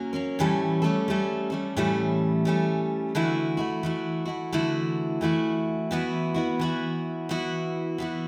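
Warm and peaceful, this short acoustic folk piece is cut from a longer work and runs 8.3 seconds. A single picked steel-string acoustic guitar plays alone throughout, its bright, full-bodied jumbo tone sitting up front in the mix. The eighth notes carry a gentle swing in 4/4, and the instrument is tuned slightly below standard pitch, with A at 438 Hz. The harmony moves from A7 at 0.4 seconds to Dadd9 at 3.2 seconds, then settles on Esus2 at 5.9 seconds. A moderate concert hall reverb with a 1.8-second decay surrounds the guitar, lending the playing a spacious setting.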